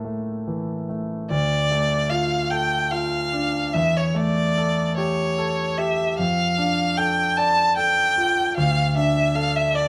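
A single bowed violin carries the melody in this short passage cut from a longer romantic classical work, its tone rich and focused with vibrato that sits up front yet carries a faintly distant quality. The grand piano opens alone and supplies the accompaniment throughout, warm and natural in sound, its deep bass anchoring the harmony. The violin enters at 1.3 seconds, and the harmony moves from Dm through A7/E and Dm/F before settling back on Dm. The 6/8 metre is shaped with a free, rubato feel, giving the duo a solemn, yearning character. Light reverb lends the recording a gentle sense of space.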